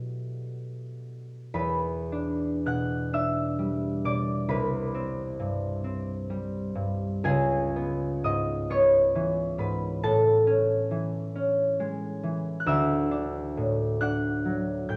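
Classical solo harp music, mysterious and wistful, unfolds slowly in 6/8 at roughly 34-47 BPM counted in dotted quarters, with a freely rubato pulse. The concert harp plays alone throughout and sits up front, its thumb-plucked strings warm and ringing across a span from C2 to G6. A short opening on a suspended B7sus4 gives way at 1.5 seconds to a longer passage that drifts through Em9, Cmaj7, C#m9 and Amaj7 before settling on Dadd9 at 12.7 seconds. A moderate recital hall reverb lets each note bloom in the space. The sound carries the character of worn, old cassette tape, with a warbly pitch drift that lends the harp a hazy, faded quality. The passage is cut from a longer piece.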